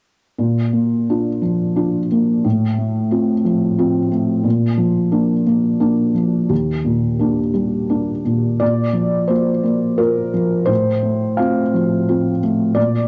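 A rubato 3/4 lilt at 88 BPM carries this tender, intimate neoclassical minimalist piano excerpt in Bb major, where a solo felt-muted upright piano, mellow, dark, vintage and up front, moves through Bb, F/A and Ebmaj7 chords between Eb2 and F5 from 0.4 to 13.1 seconds, shifting into a second section at 8.6 seconds, all set in a small room and caught on a home cassette recording.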